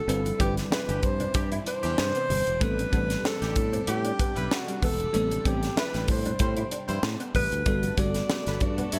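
This breezy, upbeat stretch of polished 1980s jazz-funk pop opens at once with an up-front alto saxophone carrying the melody, its warm subtone colored by light vibrato and scooped notes. Beneath it sit a sparkling, bell-like FM electric piano shimmering with chorus and a very quiet string machine whose swirling, phased sawtooth chords hold steady. At 95 BPM in 4/4 with a gentle sixteenth-note swing, a crisp fusion drum kit with a high-tuned snare and punchy kick joins almost immediately, alongside a growly fingered bass and a dark, clean electric guitar riff tucked low in the mix. Ringing, soft-handed congas enter close and dry at 0.3 seconds, and a jazz-style horn section arrives at 0.9 seconds as a background second line touched with digital delay. The harmony moves from Cmaj9/G to Am11 at 2.6 seconds and on to Gmaj9, all framed by light small-room reverb and a bright, glossy digital production.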